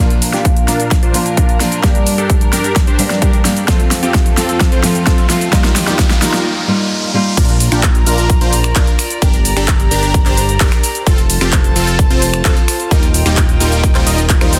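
A dark, fingerpicked steel-string acoustic guitar, an intimate chamber string section with light vibrato, and bright, detuned supersaw chords that sweep through a low-pass filter with tape echo open this triumphant, euphoric festival progressive house clip together, all pumping against the punchy, overdriven electronic kick and a layered big-room kit with a huge snare, hi-hat, shaker, claps and snaps. A drum fill and a background riser and noise sweep drive the build-up into a brief break, and the guitar stops at 7.3 seconds. At 7.4 seconds the drop lands with a fat, saturated sawtooth bass beneath the warm strings and lush supersaws, all held in a dense, heavily limited modern mix.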